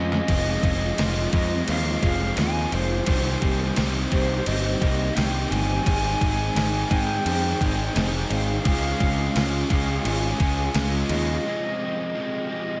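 Shoegaze and dream pop rock in a dreamy, blissful mood, this short excerpt, cut from a longer piece, opens with a drum fill from a detuned, overdriven 8-bit drum machine with a thumpy kick and fat snare sitting up front beside a growling, overdriven picked bass, while two hollow-body overdriven guitar riffs, one with analog chorus and one with reverse reverb, hover in the background under a distant, pure flute melody with tape echo, a very quiet lo-fi guitar plays fingered arpeggios through a small old amp, and a jingly tambourine shimmers from afar, all drifting through a huge ambient reverb over Fm7, Cm7, Abmaj7 and Db chords.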